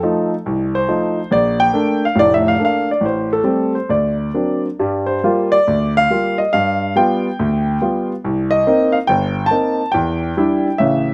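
Dry and close, with the open, roomless air of an outdoor recording, this short cut from a longer solo jazz piece puts a concert grand up front, its intimate tone carrying audible action noise, deep bass and long sustain. The piano plays alone throughout, swinging at 140 BPM in 4/4 with a loose rubato feel, and the mood is warm and relaxed. It begins in Bb major over F7 and Bbmaj7 before turning to G minor at 4.8 seconds, moving through Gm7, G7 and Cm7 to end on Em7.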